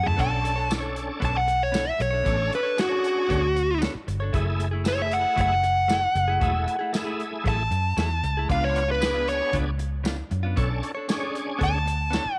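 A drum fill opens this brooding, mournful clip of straight-eighth soul blues in F# minor at 116 BPM, as a smooth, overdriven lead guitar launches straight into a dark, picked solo that runs the full 12.4 seconds, sitting up front and reaching from F#4 to A5. Beneath it, a vintage foam-muted fingered bass plays round, amped low notes, also close in the mix, while a small-room soul kit with dark cymbals, a medium-tuned snare, tight kick, hi-hat, toms and tambourine keeps a straight 4/4 feel. A bright, direct-recorded clean electric guitar adds compressed stabs lower in the balance. From 0.2 seconds a full, shouting tonewheel organ fills in the accompaniment, lightly overdriven with key click, chorus vibrato and a slow rotary speaker. The harmony moves through Bm9, F#m9 and a tense C#7b9 before returning to Bm9, all bathed in a moderate spring reverb that lends the mournful mood a lingering tail.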